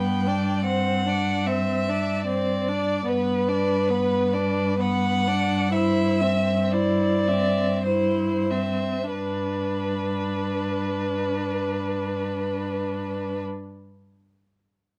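An intense, rich cello sits up front on a low G beneath this tender, romantic string quartet movement in a rubato 3/4, where a distant, expressive first violin carries the melody with vibrato and portamento, a focused second violin adds a smooth-topped second line, and a dark, close viola with soft attack fills the accompaniment over G, D7/G and C/G harmonies, the playing slowing from 1.9 to 9.1 seconds before a new section arrives, in light reverb in this passage cut from a longer piece.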